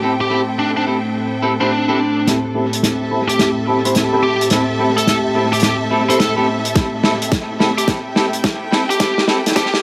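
Swaggering and gritty, this glitch hop excerpt moves at 107 BPM in 4/4 with a swung sixteenth-note feel, sitting on an A minor seventh chord in A minor pentatonic. A warbling, detuned tape-like pad holds sustained chords with chorus and its own reverb, pumping against the sidechain, while a clean, picked electric guitar plays filtered stabs through dub echo and a distant, lush string section adds bowed texture with vibrato and portamento. From 0.2 seconds a biting, overdriven lead guitar carries the melody, also trailing dub echo. At 2.3 seconds a saturated soul drum kit with a rolled-off top enters up front on hi-hat, rim click and snare, launching a build-up with a drum fill as a filter sweep moves across the clean guitar. A tight, overdriven electronic kick joins at 6.8 seconds, capping an echo-heavy mix set in a small room with moderate plate reverb.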